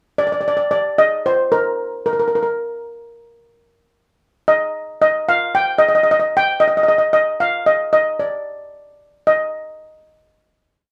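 Calypso in Eb major at 112 BPM, sunny and bouncy, this short complete piece features a solo double seconds steel pan played with medium rubber sticks, sitting up front with a metallic, shimmering tone. Entering at 0.2 seconds during a brief pickup bar, the pan carries a motif-based melody built from call phrases through the verse, then stops at 9.5 seconds within the final-note section, which closes at 10.9 seconds. The sound has a live-in-the-room feel, with a short, wet studio reverb.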